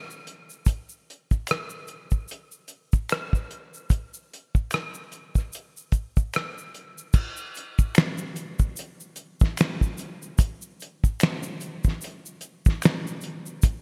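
A cloth-damped, thuddy drum kit sits up front, its fat snare, tight kick, dark cymbals and rolled-off top given a gated reverb, with rim clicks, hi-hat, finger snaps and crash filling out the groove from 0.3 seconds. Beneath it, a quiet egg shaker with finger snaps and group handclaps, close and dry, enters at 0.1 seconds in this sensual R&B piece at 74 BPM in 4/4, swung on the 16ths. The bright 1980s-style digital production carries light reverb and a small room ambience, moving from its opening section into a second at 7.1 seconds in an excerpt cut from a longer piece.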